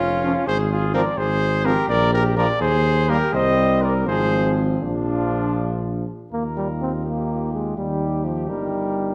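A dark, warm production places this short brass quintet fragment in a recital hall whose reverb lingers for about a second and a half. The mood is stately and gently glowing, in a lilting compound metre that sways in a straight classical style. A dark trumpet with a soft attack, smooth top and light vibrato carries the melody up front, while a warm flugelhorn shadows it with a second line just beneath. A punchy, mellow tuba anchors the bass up front, and from 0.2 s a clear, close-miked trombone and a French horn with light vibrato fill in the accompaniment from the background. The harmony moves from a rootless Fm/Ab through Bb5, Eb, Cm, Fm/Ab and Bb before settling back on Eb as a new section begins at 6.3 s.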